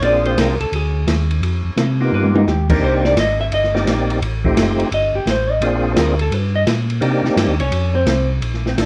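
A brisk swing at 172 BPM in 4/4 drives this soulful soul jazz organ trio fragment, with an open acoustic drum kit up front, its dark cymbals, medium-tuned snare and boomy kick sounding smooth, plus a short fill at 2.1 seconds. A clean, picked hollow-body electric guitar solos until 8.3 seconds over changes moving from Bb9 through G7alt, Cm7 and F9. A fat, percussive tonewheel organ with key click, third harmonic percussion, light overdrive, chorus vibrato and a slow rotary speaker carries the melody, while a round, mellow second organ, also lightly overdriven with chorus vibrato and a slow rotary speaker, holds the bass, the whole mix set in moderate studio reverb and tinted by worn, warbling cassette tape with pitch drift.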